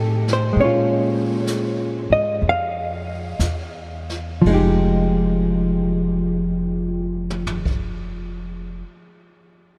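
A dark, clean hollow-body guitar and a woody, thumpy upright bass open this melancholic, wistful jazz ballad excerpt in F minor at 56-67 BPM with a swung 4/4 feel, the tempo slowing over the first 4.4 seconds as the harmony moves from F to Bbm7 and then settles on Fm9. Brushed drums enter at 0.3 seconds, sitting distant in a small room with dark cymbals and a boomy kick, behind the up-front guitar and bass. A huge ambient reverb soaks the dreamy mix, which carries lossy compression artefacts.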